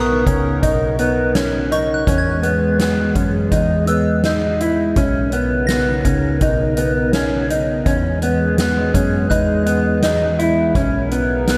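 A warbling, lo-fi tape-like pad holds sustained chords through chorus and its own reverb as a clean, dark electric guitar plays up-front fingered arpeggios with analog chorus and delay, a round, punchy foam-muted picked bass sits deep below, and a pure FM synth bell glimmers in the background through chorus, phaser and delay until 10.2 s, while a soft-mallet drum kit with a fat snare and boomy kick joins at 0.3 s in this blissful, ethereal dream pop piece at 83 BPM in B major, drifting between Bmaj9 and Emaj7 inside a huge ambient reverb.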